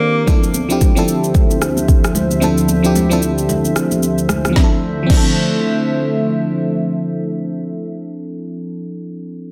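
Amapiano at 112 BPM in D minor with a hypnotic, late-night mood, this excerpt sets a glassy, bell-like FM electric piano and a hollow, flute-like pad, both treated with chorus, over a Dm9 chord, while an up-front electronic drum kit with deep kick, woody snare, rim click, shaker and crash plays alongside background high-tuned congas from 0.3 to 5.3 seconds, all in light digital ambience and a dense, heavily limited modern master.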